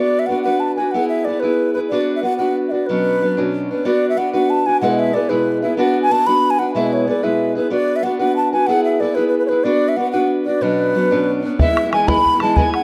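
Awash in a lush hall reverb over a rough home-demo mix, this dark yet spirited Celtic jig in 6/8 sets an airy, tongued baroque flute melody up front over a full-bodied, fingerpicked steel-string acoustic guitar moving between Bm and E/B, until at 11.6 seconds a bright wooden whistle with vibrato, a soft attack and chiff adds a second line and a boomy, close, dry bodhran joins as the piece shifts to E.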